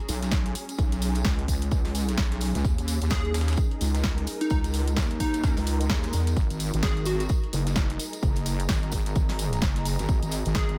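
An ethereal, airy pad with ensemble chorus opens this bouncy, swaggering bass house excerpt in G# minor at 129 BPM with a swung 16th feel, joined at once by a heavy, saturated wobble bass pumping under a punchy, up-front electronic kick, a layered house kit with studio reverb, a very quiet, gritty sampler-style breakbeat kit and a jingly tambourine in the background, while a bright, catchy plucky unison lead with phaser and analog delay enters at 3.1 seconds and a very quiet electronic swell appears at 5.8 seconds.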